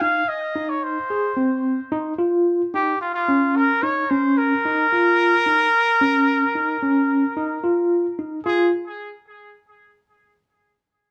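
A warm trumpet carries the melody in a jazz style, soloing up front between F4 and F5 with a light vibrato, a roomy quality and a tape echo trailing its lines. Beside it, an overdriven tine electric piano plays arpeggios between C4 and Ab4, its barky, gritty tone coming through a combo amp with a medium tremolo. This is an intricate, tense progressive instrumental in 5/4 at 110 BPM with a straight feel, tuned to A4 = 438 Hz and cut from a longer piece. The harmony opens on F7(no3) and moves to Db69 at 3.0 seconds, then drops out at 8.5 seconds as a new section begins. Both instruments play together from the start until 8.7 seconds, heard in a moderate studio reverb.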